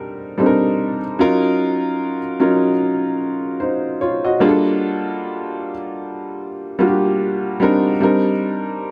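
Soulful and introspective, this short fragment of a longer R&B piece moves at an unhurried 75 BPM in 4/4 with a gentle sixteenth-note swing. A lone upright piano carries everything, its woody, smooth, vintage tone sitting up front and spanning Gb3 to Eb5. The harmony drifts through rich minor ninth chords, opening on Cm9, shifting to Ebm9 at 1.2 seconds and Gm9 at 4.4 seconds before returning to Cm9 at 8.0 seconds. A light reverb gives the piano a soft sense of space. The piano plays alone from start to finish across the full 8.9 seconds.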